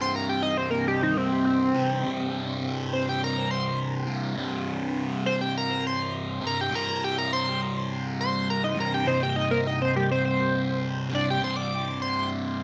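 A tearing, full-bodied oscillator-sync lead with sawtooth bite, sub-octave weight, vibrato, chorus and analog delay carries the up-front melody from C4 to D6 until 12.3 s, over a double-tracked, compressed fuzz guitar riff colored by phaser in a hypnotic, kaleidoscopic rock fragment at 103 BPM in straight 4/4, all set in moderate spring reverb within an echo-heavy mix.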